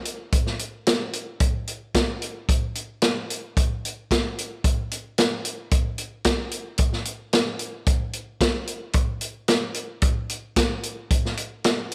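Mysterious and dark, this short rock excerpt cut from a longer piece moves at 111 BPM in a straight 4/4 feel. A vintage acoustic drum kit carries the whole passage, playing from 0.1 to 11.9 seconds with hi-hat, kick drum and snare drum. The kit sits up front with a natural small-room character, a punchy kick and a medium-tuned snare. A moderate echo chamber reverb with a 1.5-second decay adds a shadowy depth around the drums. The result is a brooding groove that spans its single section.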